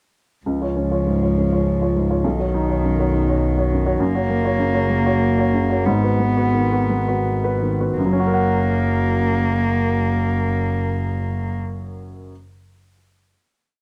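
A dry, close recording in the manner of a 1970s studio, with only a small room's reverb around the players, frames this short, complete neoclassical piece for piano and strings. In 3/4 and F# major, it moves with a rubato feel between 82 and 104 BPM, tender and hopeful in mood, and it slows from 3.1 to 8.0 seconds as the theme unfolds over C#, Badd9, F# and G#m7. The upright piano sits up front with a woody, polished sound, playing inner broken chords beneath the tune. A single bowed cello, dark and nasal, carries the second line in sustained chords, played sul tasto with light vibrato, a soft attack and a smooth top. A lone bowed double bass, pure and floating, holds sustained low notes as a drone. The strings stop at 11.5 seconds, and the piano lets the final F# chord that arrives at 8.0 seconds ring on until 12.3 seconds.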